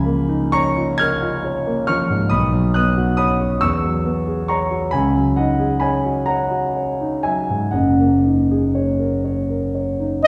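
Set in a wet recital-hall reverb and heard from further back in the room, this brief classical excerpt features a single concert grand piano with a deep bass and natural tone, unfolding luminous, pastoral accompaniment in a rubato 6/8 whose rich, colorful chords span from the low to the high register across 10.3 seconds.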